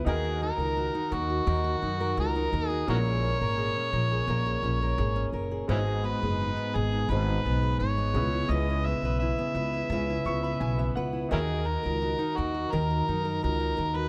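A tender, reflective acoustic pop excerpt opens with a full-bodied, fingerpicked steel-string jumbo guitar and a clear, polished concert grand piano in the background, joined almost at once by a woody, thumpy pizzicato upright bass up front. An amplified, gritty overdriven harmonica carries the melody with light vibrato, tongue slaps and a touch of delay, all in a light reverb. The piano adds a short fill from 9.9 to 11.3 seconds before the chords return to D#m.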